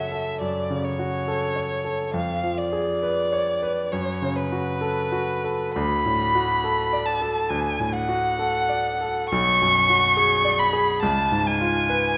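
The recording sits in a moderate recital hall, whose 1.5-second reverb gives the duo a natural sense of space while both players stay up front. This short, melancholic classical passage in a romantic style moves at a rubato 61-72 BPM in 4/4, tuned to A4 = 439 Hz. A single bowed violin carries the elegiac melody from start to finish with a rich, expressive tone, colored by vibrato and portamento. Beneath it, the grand piano supplies a clear, natural accompaniment with short sustain, reaching down into its deep bass register. The harmony begins on F#m, passes through D and a G#m7b5/B, and comes to rest on an unresolved C#7 at 11.0 seconds, where the cut falls just after.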